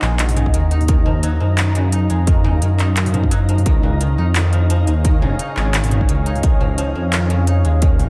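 A spacious, dark mix in light reverb, this short cut from a longer half-time drum and bass piece moves at 173 BPM with a lightly swung 16th-note feel, shifting from Eb minor to Db at 3.7 seconds. Up front sit a rumbling, saturated detuned saw bass and a heavy, tape-colored electronic kick that lands at 0.5 seconds, while an industrial kit of handclaps, crisp hats and toms, re-recorded in a large room, fills out the groove. Above them a deep, moody ambient pad pumps with sidechain and chorus, dry, woody fingerpicked koto arpeggios drift through a diffuse delay, and a grainy, flickering granular texture joins in the background at 0.7 seconds.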